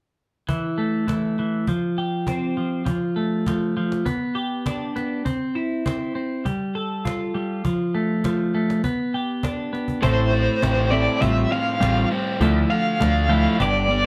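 A bright, twangy twelve-string electric guitar picks a clean, compressed riff up front over a woody cajon in this cool, bittersweet indie rock piece at 101 BPM, and after a drum fill at 9.7 seconds the sound thickens at 10.0 seconds as a raw garage guitar riff with overdrive, a growling, overdriven picked electric bass and a warm, overdriven lead guitar melody with tremolo join in, the band playing live together in one room with light reverb.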